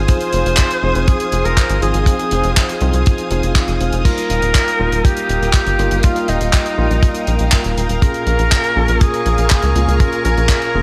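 Italo disco with a sunny, danceable lift, cut from a longer piece: a dry, tight kick sits up front with a damped 70s kit of crash, hi-hat and handclaps under gated reverb, a punchy sawtooth sequencer bass drives below, a worn, slightly out-of-tune tine electric piano adds overdriven stabs, a lush vintage string machine holds bright chorused chords, and a distant, roomy alto saxophone carries the vibrato-laden melody through tape echo and shimmer reverb over Fm7, Ebadd9 and Bbm7.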